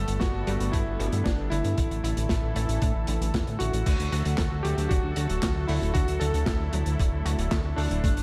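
Romantic and dreamy, this synthwave fragment sets a vintage electric grand piano melody with subtle chorus and tape echo over a smooth, warbling analog pad with sidechain pumping, as the chords move from Gadd9 to Asus4 before settling on D at 3.9 seconds. A very quiet, bright unison pluck traces sawtooth arpeggios, while a fat, detuned analog bass with tube saturation and sidechain pumping sits up front. The beat pairs a thumpy, sampler-style electronic kick with a gritty, dark breakbeat kit of snare, handclaps, hi-hat and crash cymbal, set in a light reverb.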